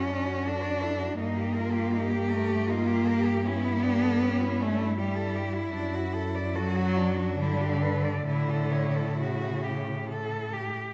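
A serene, lyrical classical passage for cello ensemble opens with four bowed cellos sounding together from the first moment, moving in a gentle 3/4 at roughly 65-83 BPM with a flexible, rubato pulse. The melody cello sings in a focused tone with vibrato, set back at a distance, while a second cello carries a companion line whose range reaches as high as D5. Closer to the listener, the accompanying cello plays with a soft attack, expressive portamento and vibrato, and it is the most prominent voice in the blend. Beneath them, the bass cello holds a smooth, even foundation between F#2 and A2. The harmony drifts from D/F# through Eb/G and A7/G before settling toward an A chord at 8.3 seconds, all within a moderate recital hall reverb that surrounds the rich-toned ensemble. This is an excerpt from a longer piece, ending at 10.9 seconds.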